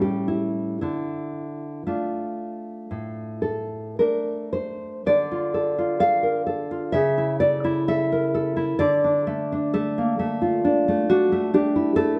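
In a free, rubato 4/4, this wistful, melancholic romantic fragment cut from a longer piece features a lone nylon-string guitar, dark, thumb-plucked and up front, moving from A7 to Dm, then shifting into a second section at 5.1 seconds that passes through A/C# before settling back on Dm, all within a moderate recital-hall reverb.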